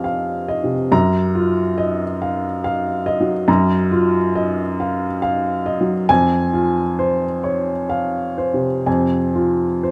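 An upright piano plays alone, its woody, intimate tone sitting up front with the audible clatter of its action close to the ear. This brief fragment of neoclassical minimalist piano, cut from a longer piece, moves in a slow, rubato 3/4 at roughly 61-71 BPM, and its mood is reflective and melancholic. The harmony opens on Fm7, shifts to Ebmadd9/Gb at 0.9 seconds, and comes to rest on F minor at 6.1 seconds. The playing spans from F2 up to Bb5 across the 9.9 seconds. A light, small-room reverb and a rough home-demo mix give the recording a natural, unpolished closeness.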